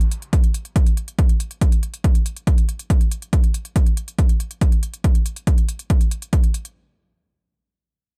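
Trance at 140 BPM in a straight 4/4, this short fragment of a longer piece carries a bittersweet, emotional mood. A crisp electronic hi-hat opens at the very start, and a punchy electronic kick drum joins at 0.3 seconds, sitting up front while the hats stay much further back. Both drum parts sound layered and produced, and both were re-recorded in a small room. The overall production is dark and warm, with very little reverb. The kick drops away at 6.4 seconds, shortly before the hats, leaving a brief closing passage from 6.8 seconds.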